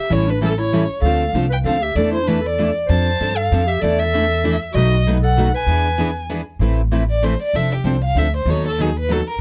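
An expressive bowed violin carries the melody up front, with vibrato, portamento and a soft attack, in this virtuosic, swinging gypsy-jazz piece in A minor at 194 BPM in 3/4. A mellow clarinet plays a second line with subtone and scooped notes until 6.3 seconds, and from 6.6 seconds the violin takes a solo. Underneath sit a bright, full-bodied picked jumbo guitar, a second picked concert guitar in the background, and a woody, thumpy pizzicato upright bass on gut strings, all captured in a dry, close 1970s-style studio sound in this 9.4-second cut from a longer piece.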